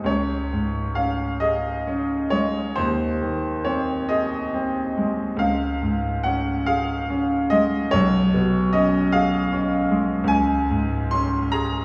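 This is a romantic classical nocturne for solo piano, tender and dreamy in mood, cut from a longer piece. A bright grand piano carries everything alone, its brilliant, smooth tone and long sustain giving the lines a glowing, slightly vintage character as they span from deep in the bass to high in the treble. The music sways in a lilting 12/8 with free rubato, so the pulse breathes rather than ticks. The harmony drifts gently through the home chord, an inverted dominant and a softly colored seventh before settling back, with the passage running to 11.8 seconds. The piano sits up front, yet a wet recital-hall reverb and a sense of hearing it from further back in the room wrap it in a lingering halo, and the tuning sits a touch high at A4 = 444 Hz.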